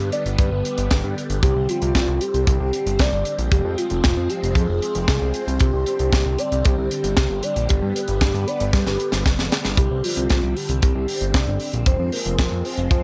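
A round, octave-layered synth lead with chorus, tremolo and delay carries the melody over swirling, phased string-machine chords, a fat, tube-saturated analog bass and a tight funk kit of hi-hat and high-tuned snare, with an up-front kick joining at 0.4 s and a drum fill at 8.7 s in this danceable, bittersweet italo disco passage set in small room ambience.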